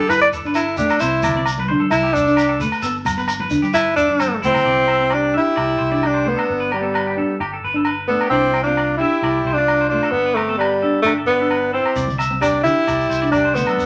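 Warm and sunny, this excerpt of highlife guitar band music at 132 BPM in C major is led by an intimate, breathy tenor saxophone playing a scooped, vibrato-laden jazz-style melody up front, soloing until a bright alto saxophone adds a second line from 4.5 seconds, over a mellow, darkly fingered electric guitar, a twangy picked clean guitar playing arpeggios, a round, amped fingered bass, ringing agogo bells, and grainy shekere and thick-skinned congas that fall away mid-passage before returning around 12 seconds, all in a moderate studio reverb.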